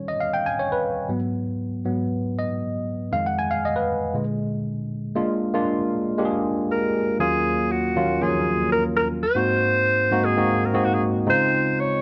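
Slick, urban pop in Eb minor at 118 BPM, cut from a longer piece, where a worn, slightly out-of-tune tine electric piano with light overdrive and analog chorus plays alone through the opening section and carries a jazzy progression from Eb7 to Dbmaj9, while a breathy, subtone alto saxophone with scooped notes and plate reverb takes the jazz-style solo melody up front from 6.7 seconds, all set in a small room.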